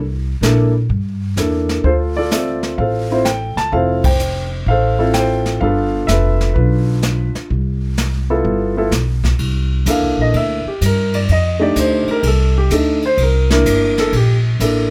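A woody, growly upright bass opens this sophisticated swinging jazz piano trio excerpt at 127 BPM, with a mellow, dark grand piano carrying the melody and a brushed drum kit with dark cymbals and a boomy kick joining at 0.4 seconds. The band hits an accent together at 4.0 seconds, and the harmony moves through rich C13, Dm7 and G13 chords with a brief chordless stretch before the piano takes a solo over C13 and F13 from 9.4 seconds. Bass and piano sit up front with long piano sustain, all framed by light reverb.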